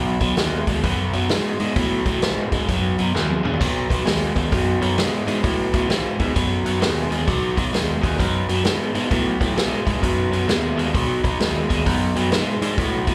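A crunchy, overdriven electric guitar leads this driving, gritty blues rock and southern rock excerpt, playing a bright, double-tracked picked riff with slapback echo that sits up front in the mix. Underneath, a growling picked electric bass, overdriven and captured both direct and through an amp, carries the low end in B mixolydian from the very start. A vintage acoustic drum kit joins at 0.2 seconds with a punchy kick, a medium-tuned snare, hi-hat, toms, dark cymbals and a splash, its rolled-off top giving it a natural, up-front studio-room character. The band moves at 131 BPM in 4/4 with a swung eighth-note feel, and the drums break into a short fill from 3.1 to 3.6 seconds. The whole performance comes across as a live gig heard through the venue's PA, with light club reverb around it.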